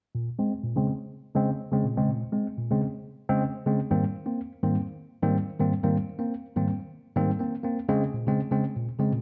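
A worn, slightly out-of-tune tine electric piano plays alone and up front from 0.1 to 9.2 s, its clean tone coming through a combo amp and shaded by a low-pass filter and slapback echo. This is a short cut from a longer disco piece in Bb dorian, sultry and danceable, moving at 124 BPM in a straight 4/4 with tuning set to A4 = 442 Hz. The piano stays between Ab2 and C4, and a filter sweep colours its sound through the first 7.9 seconds. The harmony runs from Bbm7 to Abmaj9 at 3.8 s, then returns to Bbm7 at 7.9 s, where a new section begins. A moderate large studio reverb with a 1.1-second decay gives the lone keyboard a roomy setting.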